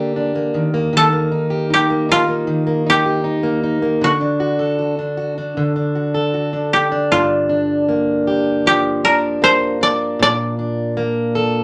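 Wistful and reflective, this short pop excerpt in G minor moves at an unhurried 78 BPM, with an up-front, woody koto played with fingerpicks carrying the melody over a full-bodied, fingerpicked plugged-in steel-string acoustic guitar whose jumbo tone fills out the accompaniment through chords shifting from Gm/D and Eb to D, then into Gm7 at 7.1 seconds and Bbmaj7, all set in a modest wet studio reverb.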